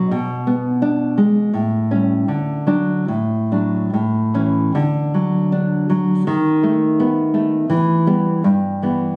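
A thumb-plucked nylon-string guitar, warm and up front, carries this brief excerpt of a tender, nostalgic romantic piece for solo classical guitar in D major, moving in 2/4 at 70-85 BPM with a rubato feel and sitting between G2 and D4. Its harmony passes from Bm6 through A7 to D and A, then a second section beginning at 4.8 seconds turns toward B7/D# and Em before the cut at 9.2 seconds. The sound carries a moderate recital-hall reverb, with the compressed character of a phone recording made in the room.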